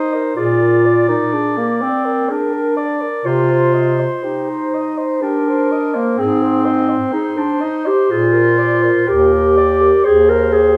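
Bathed in the wet reverberation of a recital hall, this fragment of a longer classical piece for single-reed quartet moves in a tender, lyrical triple metre with gentle rubato, as a mellow, distant clarinet sings the melody over a dark alto saxophone's second line with light vibrato and a soft attack, while a dusky second clarinet sits up front in the accompaniment and a warm bass clarinet enters at 0.4 seconds to anchor the bass.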